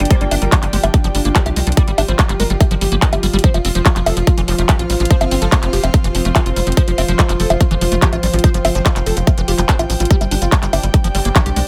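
A punchy, layered electronic kick drum sits up front and drives this intense, psychedelic trance excerpt at 144 BPM in straight 4/4, alongside a tight, driving sequencer bass whose sawtooth and square-wave filter pluck is thickened with tube saturation. Over them, a bold, detuned unison lead carries the melody from G3 to Eb5, its sawtooth and triangle tones given a sub octave, vibrato, phaser, delay and sidechain pumping, while a squelchy, resonant liquid acid bass riff with filter sweeps, phaser and delay bubbles in the background. A big-room dance drum kit adds bongos, handclaps and hi-hat. An evolving wavetable pad holds bright, morphing ring-modulated chords behind the lead, bathed in ensemble chorus, built-in reverb and phaser, and an airy, breathy pad with a noise layer and chorus floats higher in the texture. A very quiet, nasal vowel-sweep wobble bass surfaces only briefly, from 0.0 to 0.6 s, again from 4.5 to 5.7 s and once more from 11.1 to 11.3 s. 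The chords move from G5 to F5 at 3.4 s and back to G5 at 10.1 s in a dry, loud mix.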